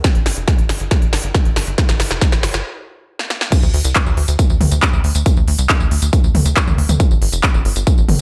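Uplifting trance at 138 BPM in D minor, emotional and soaring, this short passage taken from a longer piece opens with a build-up of drum fills from a big-room dance kit, with a punchy snare, crisp hats, handclaps, tambourine, toms and crash, alongside an up-front electronic kick and a tight sequencer bass. A stop at 2.7 seconds leads into the drop at 3.5 seconds, where the driving sawtooth-and-square bass pumps with sidechain compression, a filter pluck, a moving notch and a fast attack that decays. The tape-warm, layered drums carry the sidechain pumping on hats, toms, cymbals and percussion, and the overall sound is dry with little reverb.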